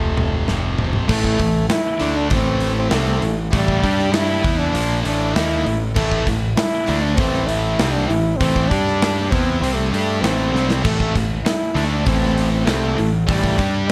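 A clear French horn carries the melody in a solo, classical style, its soft attack and light vibrato marked by a slapback echo as it sits above a brooding, angsty stretch of quiet-loud alternative rock in A minor at 98 BPM. Beneath it, a tight distorted guitar plays a riff from the start alongside a growling, overdriven electric bass, and a big acoustic rock drum kit enters at 0.2 seconds with a punchy kick, a medium-tuned snare and a dark, rolled-off top, sitting up front in the mix. At 1.1 seconds two more guitars join in the background: a biting, double-tracked overdriven guitar and a thick fuzz guitar, stacking bright, picked riffs behind the horn. The harmony settles on A minor with brief moves to G5, and the drums break into a short fill at 10.5 seconds. The sound is dry, with little reverb, and the piece is cut from a longer work.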